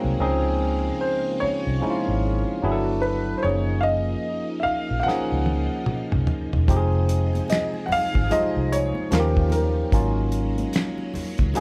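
A barky, bright tine electric piano, a shimmering chorused string machine and a round, foam-muted vintage bass open this soulful, swung neo-soul excerpt, joined at 1.0 s by a dark, worn grand piano melody with audible action noise, then at 5.1 s by a dry, cloth-damped drum kit with finger snaps and a fat snare that enters on a fill, and finally by very quiet, high-tuned congas at 6.7 s, all in a live-room sound with light reverb.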